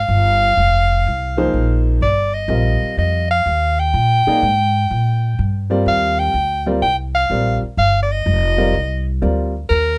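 Modal jazz with a hypnotic, searching swing feel, cut from a longer piece, where a bright, close-miked soprano saxophone carries the melody with light vibrato over a woody pizzicato upright bass on steel strings, joined at 1.4 s by an intimate, boxy upright piano whose short-sustained accompaniment carries audible action noise, all set up front in light reverb over a single sustained harmony.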